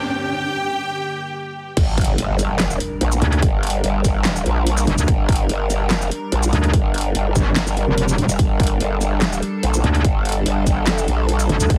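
Chaotic and aggressive, this fragment of half-time heavy wobble dubstep in G minor at 145 BPM opens with a lush, vibrato-rich violin section carrying a brief melody through digital delay, over an evolving, morphing wavetable pad with phaser, chorus and sidechain pumping, plus an electronic riser and impact. At 1.8 seconds the drop lands on G minor: a punchy, tape-warm electronic kick and a layered dubstep kit with a huge snare, metallic hats, handclaps, shaker and crash arrive with a growling, formant-filtered bass driven by overdrive. From 3.2 seconds a metallic FM wobble bass, distorted and up front, joins, all squeezed into a heavily compressed, radio-like sound with light reverb.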